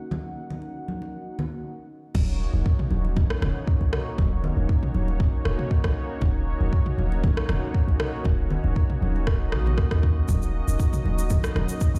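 Heard as if through a big sound system in a bare room, this earthy, driving afro house excerpt opens with a smooth, detuned sawtooth pad under a filter sweep, with chorus and sidechain pumping, beside ringing, soft-handed congas, before a brief stop at 1.6 seconds. The drop at 2.1 seconds brings in a deep, up-front electronic kick, an overdriven deep house kit with crash cymbal, rim click and toms, and a boomy, sine-based 808-style bass with a noise layer and sidechain pumping. A grainy, bright egg shaker, close and dry, joins at 10.3 seconds.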